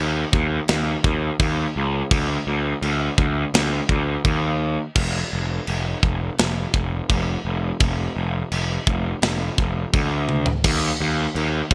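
A fuzz-soaked picked electric bass opens this dark, heavy metal passage, growling through an overdriven tone that sits up front in the mix, ranging from F1 to D#2. A tight metal drum kit joins at 0.3 seconds, its medium-tuned snare and tight kick placed forward alongside the bass, with china, crash and splash cymbals ringing bright above the toms. The tempo is a steady 84 BPM in a straight 4/4, and the tuning sits slightly below standard at A4 = 436 Hz. A short drum fill arrives at 10.3 seconds before the cut at 11.7 seconds, as this fragment is taken from a longer piece. The production is crisp and dry in a 1980s digital style, with the drums carrying a studio-room acoustic character.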